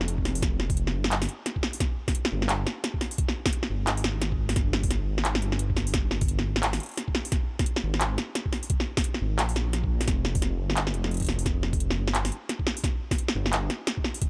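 A dark, detuned saw bass sits up front with deep, beating tube saturation between F1 and Bb1 until 13.7 seconds, anchoring this tense, cinematic half-time drum and bass piece at 174 BPM with swung 16ths, while a layered electronic kit re-recorded in a small room brings a cracking snare, metallic hats and handclaps beside a compressed, pitched-down, thumpy kick that enters at 0.2 seconds, all in a dry mix.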